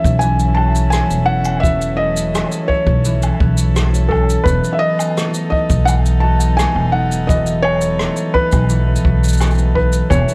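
Soft studio reverb surrounds this intimate, pastoral folktronica piece, which is cut from a longer work and moves in a straight 4/4. A felt-muted upright piano carries the melody up front, its thin felt giving a muted, mellow tone with audible action noise, and tape echo trails its notes. Beneath it, a concert harp fingerpicks ringing arpeggios through a low-pass filter, while a rich string quartet, one player per line, holds sustained chords with light vibrato, an airy sul tasto bow and soft attacks. A woody, bright pizzicato upright bass on steel strings sits prominently at the front. Brushes play a boomy kick drum along with shaker, woodblock and rim click, these drums heard from a distance in a small, roomy space. The harmony rests on F#m7/E before moving to B7/E at 4.5 seconds.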